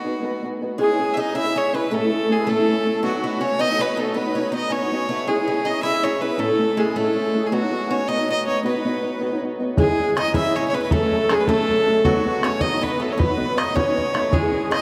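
Rollicking and cheerful, this Celtic folk jig in 6/8 at 106 BPM in B mixolydian puts a rich, smoothly bowed fiddle with light vibrato up front over a boxy, fingerpicked ladder-braced acoustic guitar, joined at 0.8 seconds by a metallic, double-strung Irish bouzouki carrying tape echo and a very quiet, reedy, shimmering musette accordion, while a damped, tight, band-limited bodhran enters at 9.8 seconds, the ensemble set in a vast, echoing cathedral space.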